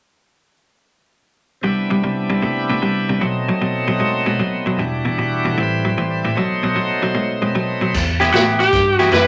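A bright, shouting tonewheel organ with a slow rotary speaker, key click and light overdrive opens at 1.6 seconds alongside an electric guitar riff at the edge of break-up, picked, compressed and up front. This smoky, soulful electric blues shuffle in E minor swings at 152 BPM in 4/4, moving through Cmaj7, B7b9, Em7 and Am7 before settling on Em. At 7.9 seconds the band fills out as a round, foam-muted electric bass and a vintage acoustic drum kit enter, the kit giving a punchy kick, a medium-tuned snare, hi-hat and dark crash cymbal with a rolled-off top. An overdriven slide guitar, played with fingerpicks and sitting loudest in the mix, takes the melody from 8.3 seconds in a brief, gritty phrase. A moderate large studio reverb gives the short excerpt a natural sense of room.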